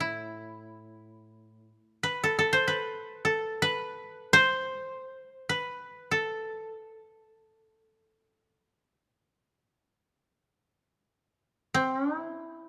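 Closely miked and finely detailed with a light touch of reverb, this short excerpt of Japanese chamber music unfolds in free time with an austere, calm mood. A warm, woody koto carries the melody up front from start to finish at 12.7 seconds, its fingerpicked tone dry and intimate, while a second, brighter koto sounds a low accompanying note only in the opening 1.7 seconds.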